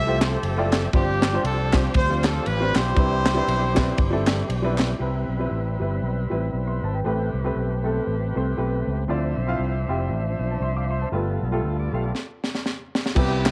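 Uptempo gospel with a swung, jubilant and hopeful feel, opening with a clear, punchy horn section carrying the melody over a tight funk drum kit, crisp handclaps, a punchy fingered electric bass and an intimate baby grand piano whose action noise is audible. A thick tonewheel organ holds sustained chords through a slow rotary speaker with light overdrive, and by 5.0 seconds the horns and drums have dropped out as a dark, very quiet French horn section joins in with sustained chords. After a drum fill from 12.1 seconds, the clear horns return briefly to close this fragment of a longer piece.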